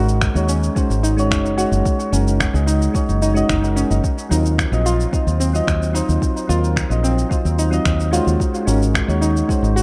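Mellow, up-front electric-piano-like synth keys with chorus, tremolo, 12-bit sampler grit, low-pass filtering and dub echo open this relaxed, warm sunset chillout excerpt in Eb dorian at 110 BPM, together with dark, round pluck arpeggios carrying chorus and dub echo and a foam-muted fingered electric bass sitting up front, while electronic shaker and finger snaps join at 0.1 s and a soft electronic kick at 0.2 s, the echo-heavy mix set in a moderate spring reverb as the chords move through Ab7sus4, Gb69 and Ebm69.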